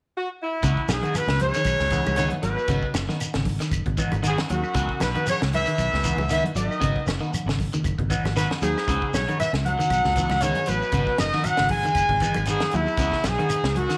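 A brilliant, punchy horn section opens the melody at 0.2 s, and at 0.6 s this hypnotic, intense afrobeat excerpt in C# minor settles into a 117 BPM groove with a light sixteenth-note swing, moving between C#m11 and G#m7. A tight funk kit with a high-tuned snare, a dark, round fingered bass, very quiet congas and a grainy shekere drive the pulse, while two slightly broken-up electric guitars add arpeggios bathed in spring reverb and twangy stabs colored by phaser and slapback echo. From 0.9 s faint woody claves join, and a raspy, gritty baritone saxophone with vibrato and a quiet, close-miked trumpet add second lines inside a moderate echo-chamber ambience.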